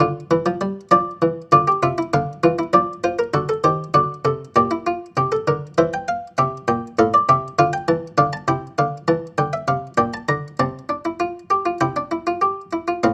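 A buff-stop harpsichord plays alone from the first moment, its muted, lute-like pluck sitting dry and up front in this brief fragment of a baroque-style three-part fugue in D minor. The mood is driving and solemn, moving in a straight 4/4 at 99 BPM across a range from A2 to Bb5, with the Flemish-style instrument captured by close, detailed microphones in a nearly reverb-free space. After an opening that settles from a diminished chord onto D minor, a longer passage from 3.3 seconds steps through D7, G minor, C7, F and B-flat before coming to rest on a suspended C that resolves to C major near 12 seconds.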